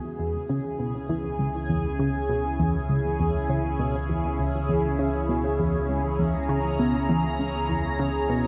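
A tight, driving sequenced synth riff with a plucky, detuned edge, treated with chorus, phaser and analog delay, pushes this excerpt of ambient, sequencer-driven space music along at 100 BPM in a straight 4/4 over a single C#m chord. Up front, a swirling, warbling vintage pad holds sustained chords through phaser, chorus and shimmer reverb, while a round, deep analog bass anchors the low end and a very quiet bubbling texture of resonant, random filter steps joins at 1.0 s. The mood is expansive and hypnotic, bathed in a huge, wet reverb with a dark production.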